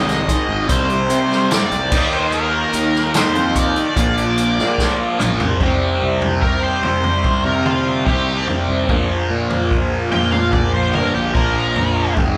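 A straight, unhurried 4/4 groove drives this hypnotic, mysterious psychedelic rock excerpt, carried by a vintage acoustic drum kit with a punchy kick, a medium-tuned snare and a rolled-off top, while grainy, very quiet maracas shake close by until 5.5 s. Up front, a bright, double-tracked fuzz guitar plays the riff through distortion and phaser, and a growly, overdriven fingered bass sits beneath it. A gritty, overdriven tonewheel organ holds very quiet sustained chords, with key click, third-harmonic percussion and chorus vibrato. The harmony moves from Ab6 through Cm7 and Ebadd9 to Bb7, then settles between Cm7 and Bb7. A warm, picked octave-fuzz lead guitar carries the melody from the start with wah and distortion, and after a drum fill at 4.8 s it takes a solo from 5.6 s. The band sounds like it is playing live in one large studio, with a moderate reverb around it.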